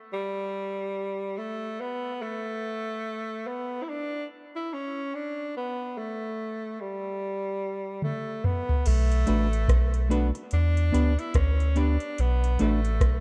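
This meditative, deep dub reggae piece opens on a clear tenor saxophone with vibrato, which plays the melody alone from the start, distant and roomy yet up front, bathed in dub echo over an unaccompanied break. At 72 BPM in 4/4 with a swung sixteenth feel in B minor, the mood is unhurried and introspective. At 8.0 seconds a soft vintage rhythm box enters with a drum fill, its deep kick, metallic hats, rim click, toms and crash cymbal sounding overdriven and re-recorded in a large room. A round, soft sub bass arrives at 8.9 seconds as the harmony settles onto Bm7, moving to Em7 and back, and from 9.3 seconds a clean, picked electric guitar adds accompaniment with tremolo, a high-pass filter and dub echo. Light reverb and digital ambience frame a dark, warm production, and the passage is cut from a longer piece.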